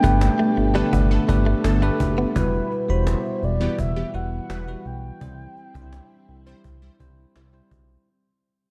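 A nostalgic, glossy 1980s-style pop passage at 84 BPM opens with a bell-like tine electric piano, a glossy, up-front chorused synth bass, a snappy cajon with snares, a vintage organ-like ensemble string pad washed in phaser, a round, warbling horn-like synth lead carrying the melody and a very quiet, clean direct-recorded electric guitar riff that stops at 2.3 s, while a funky, detuned polysynth comp adds sawtooth stabs from 0.8 s over Gadd9, Emadd9 and C chords, all fading out in a dark concert-hall reverb.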